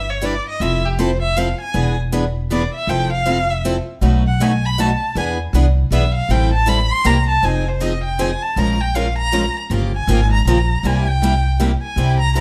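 A swinging 3/4 lilt at 158 BPM drives this excerpt of jazz manouche, a virtuosic acoustic string piece that settles into F minor from 7.4 s. A warm, bowed violin takes the solo throughout, its vibrato and portamento expressive and up front yet with a slightly distant air, over a woody, thumpy upright bass on gut strings that sits dark and forward. Two picked steel-string acoustic guitars join at 0.2 s, one boxy with fresh strings and the other bright and set in the background, all within a light reverb.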